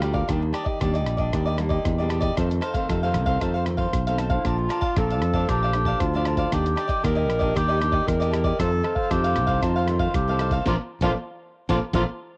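Samba and choro in a festive, playful mood, this short cut from a longer piece moves at a straight, even pulse with a homespun cassette character and light reverb. A crisp, picked cavaquinho sits up front in the accompaniment, while a fingerpicked nylon-string guitar with fresh strings rings in the background. A bright, punchy fingered electric bass holds the low end directly and close, and a lo-fi sampler-style drum kit, compressed, pitched down and muffled, supplies hi-hat, rim click, a medium-tuned snare and a thumpy kick. At 4.4 seconds a distant, roomy clarinet enters with a classical-style second line. The harmony cycles through major-seventh and dominant chords, and the band lands an accent from 10.7 seconds to the close.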